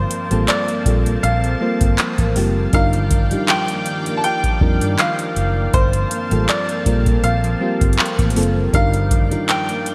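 Contemporary R&B with a late-night, sensual mood, this short excerpt moves at an unhurried pace with a light swing, drifting between two lush minor and major-seventh-colored chords. A booming analog drum machine sits up front with a deep kick, metallic hats and handclaps, its tape-tinged sound bathed in gated reverb, while a dark, foam-muted fingered electric bass adds round, punchy low end until it stops at 9.3 seconds. A clear baby grand piano carries the melody in a high register with short sustain and digital delay, and an FM electric piano, mellow and warbling with a faint noise layer, fills in accompaniment from 0.3 seconds. Underneath, a thick, detuned unison pad holds slow-blooming sustained chords through chorus, and a fingerpicked nylon-string guitar plays arpeggios in the background, treated with chorus and delay. A moderate hall reverb and bright 1980s-style digital production give the whole a glossy, spacious sheen.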